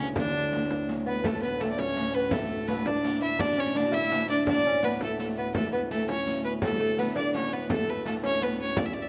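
Rustic and festive, this short medieval dance excerpt moves in a straight 6/8 at 112 BPM, with an earthy, clear bowed fiddle carrying the melody up front over a fingerpicked, gut-strung lute and a woody, ringing viola da gamba in the background, a reedy, breathing pedal harmonium drone, a dark-jingled riq and a deep frame drum entering at 0.2 seconds, all set in a recital hall's wet reverb.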